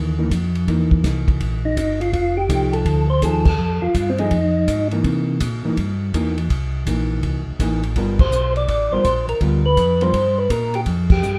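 Heard from further back in a wet club room, this short cut from a longer soul jazz organ trio piece swings at 165 BPM in 4/4 with a soulful feel. A mellow tonewheel organ carries the bass through chorus vibrato and a slow rotary speaker, a dry acoustic kit with dark cymbals and a tight kick enters at 0.3 s, and a clean hollow-body electric guitar comps beneath. A second, round tonewheel organ with percussive third-harmonic attack takes the melody from 1.7 s and again from 8.2 s over sharp-nine dominant chords, with the band hitting accents together along the way.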